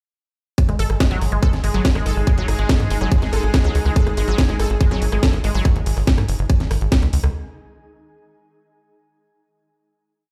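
Driving and alien, this short psychedelic trance piece at 142 BPM is one whole drop from 0.6 s to 7.3 s, built on an overdriven, up-front four-on-the-floor electronic kick with a programmed kit of bright hats, rim and cracking snare, a tight, punchy sawtooth sequencer bass rolling in sixteenths, a lush, warbling detuned unison pluck playing an accented acid line in a 6-step loop drifting against the bar with dub echo and sidechain pumping, a bubbling, resonant stepped-filter texture holding a high note in the background with chorus, and a cloudy granular pad of slowly shifting chords arriving at 2.0 s, all heard as if on a big sound system in a bare room.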